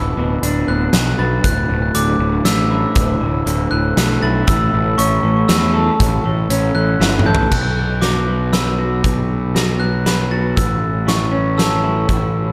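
The recording sits in a small room with light reverb, the drums big and natural while the fuzzy bass sits close and punchy at the front. This hopeful, euphoric post-rock passage, cut from a longer piece, moves in a three-beat metre over a straight feel. An electric guitar through a small old amp plays bright, twangy, slightly broken-up arpeggios with analog delay. A glockenspiel struck with brass mallets adds dark, bell-like arpeggios high above, also fed through analog delay. Underneath, a picked electric bass with overdrive gives a round, fuzzy foundation, and a huge arena drum kit with a fat snare and punchy kick drives the music with crash cymbal, hi-hat and toms. The harmony moves from Dadd9 to A, then a drum fill at 7.0 seconds leads into a second section at 7.5 seconds that shifts to B5 before returning to A.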